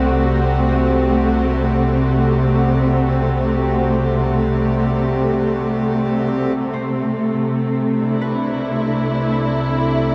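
Ambient and weightless, this fragment of a longer piece rests on a lush, woody string section bowing sustained chords up front with vibrato and a smooth top, over a deep, ominous rumbling drone and a reedy, breathing harmonium. At 6.7 s a very quiet concert harp enters with ringing fingerpicked arpeggios. The whole sits in a huge, wet ambient reverb with a cassette tape character, lending a warm mood.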